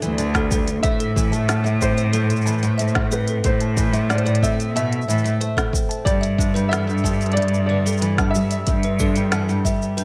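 A clear, focused cello stands up front in this intimate, autumnal folktronica excerpt, its single bowed line carrying the bass with vibrato at a straight 92 BPM in 4/4, in A minor. Above it, a felt-muted upright piano sings a soft, mellow melody with delay, while a picked twelve-string acoustic guitar sits in the background, its octave-doubled arpeggios shimmering through delay. A delicate music box enters at 0.2 seconds with a tinkling plucked second line, also touched with delay. The drums are electronic yet organic: a woody snare, smooth hi-hats and shaker, joined at 0.3 seconds by a deep kick, both kit and kick tape-warm and re-recorded in a large room. The harmony moves from Em7 to Am and settles on Em7/G at 6.1 seconds, and the overall mix is dry, with little reverb.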